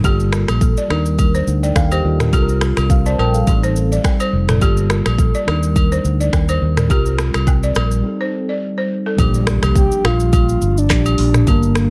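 A mellow, sultry afrobeats groove opens on a deep-kicked electronic kit with snaps, claps and shaker, a round, dark fingered bass up front, a clean tine electric piano through phaser, woody buzzing balafon with tape echo and light agogo and woodblock, before a break at 8.0 seconds gives way to a faint impact and a breathy, flute-like synth lead with chorus entering at 9.8 seconds over a Bb6 chord.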